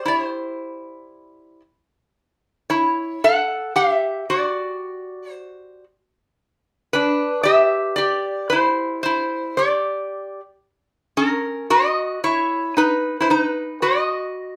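A lap resonator guitar plays alone from the start, its slide and fingerpicks drawing a metallic, nasal tone that sits up front in a wet studio reverb, as if captured live in one room. This languid, dreamy Hawaiian passage moves at 113 BPM in a swung 4/4. The harmony drifts from open, chordless moments through A7, G, Cadd9 and F#7 before landing on B at 12.7 seconds, where this fragment of a longer piece closes.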